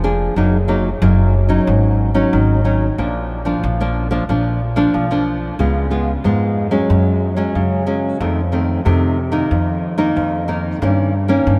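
A fingerpicked nylon-string guitar and a plucked upright bass open together in this bittersweet, yearning samba and choro passage, cut from a longer piece. The classical-style guitar sits up front with a warm tone, carrying the accompaniment through chords such as Ebm/Gb, Bb, Db7 and F7, while the woody bass holds the low end. A huge ambient reverb places the pair in a vast, echoing space, its long tail hanging on for 8.2 seconds.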